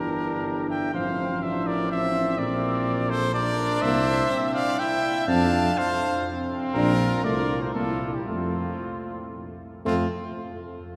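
Stately and noble, this brief passage from a longer classical piece for brass quintet moves in 3/4 at roughly 113-127 BPM with a rubato feel, settling in F major and closing on an F chord at 8.3 seconds. A mellow trumpet carries the melody up front with vibrato, while a second trumpet, closely miked with a soft attack and light vibrato, traces a warm second line beneath it. Lower down, a dark French horn sits in the background with a smooth top, and a trombone adds a warm, smooth-topped accompaniment. Anchoring everything from G1 to F2, a tuba sounds both up front and distant, its roomy tone carrying light vibrato. All five players sound together throughout, heard from further back in a cathedral with a long, wet reverb that gives the quintet a spacious, resonant halo.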